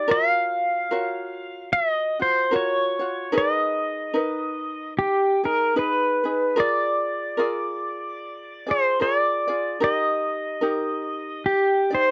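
A lilting swing on the eighth notes carries this short Hawaiian piece in 4/4, cut from a longer performance and setting a sunny, dreamy mood. An electric pedal steel guitar sings the melody up front, its bright, twangy tone played with fingerpicks, clean and compressed, gliding on slide with volume swells. Beneath it, an acoustic ukulele sits close by, fingerpicking a light, warm accompaniment a little lower in the mix. Both parts play together throughout, from 0.0 to 12.1 seconds, over a gentle progression that moves from Gbmaj7 through Abmadd9 and Bb7 before resting on Eb. The sound is dry and intimate, a close 1970s-style studio recording touched with light reverb.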